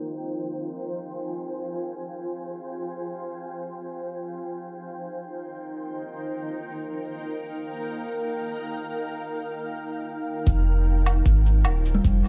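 A dark, muffled production with a low-pass filter and little room sound frames this meditative, deep ambient dub fragment in F minor, drifting in free time as part of a longer piece. For the first 10.5 seconds a granular cloud pad holds the stage on its own, a blurred, detuned, evolving sine texture with its own built-in reverb, sustaining Fm7 and Eb chords as a filter sweep moves through it. At 10.5 seconds the harmony returns to Fm7 and the low end arrives: a round, soft dub sub bass sits up front with tube saturation, joined by a thumpy, pitched-down electronic kick drum that stays overdriven and in the background. A muffled, compressed cabasa and woodblock pair enters alongside the kick, gritty with overdrive and trailed by studio reverb and dub echo. At 11.9 seconds a woody, hollow kalimba adds brief, fingertip-plucked arpeggios, its mellow tone roughened by vintage 12-bit sampler grit and carried off by dub echo as the fragment ends.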